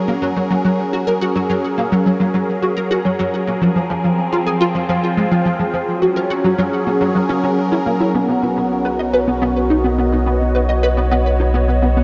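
Expansive and cosmic, this ambient, sequencer-driven space music moves at 106 BPM in a straight 4/4, cut from a longer piece. A hollow, bouncy square-wave pluck carries the riff from the start, its detuned, bright tone layered with noise and a sub octave, with ensemble chorus and delay. Alongside it, a swirling, evolving sawtooth pad holds sustained chords with a soft attack and long release, shaded by phaser and chorus. The harmony sits in Gb lydian, moving from Gb to Fm and back before shifting to a Bmaj7 at 8.1 s, where a deep, round sine sub bass enters on B1. A huge, wet reverb with an 8.5-second tail surrounds the dark production, giving the space a vast, drifting depth.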